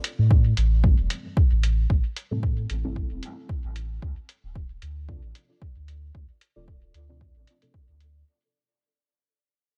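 A muffled, compressed hi-hat opens this hypnotic, hazy dub techno excerpt, sounding as if re-recorded in a small room, with a lightly swung sixteenth-note feel in 4/4. A round, sine-like sub bass enters at 0.2 seconds and sits up front, its fast attack and sustained notes pumping against a deep, layered, tape-warm kick that arrives at 0.3 seconds and sits forward in the mix. From 0.8 seconds a dark, soft chord stab floats quietly in the background, blending detuned triangle, sawtooth, square and sine tones with a sub octave, its decaying hits coloured by chorus, phaser, sidechain pumping and dub echo. The harmony moves from Am7 to Dm7 halfway through, and the whole passage sits in a dry space while fading out from start to finish.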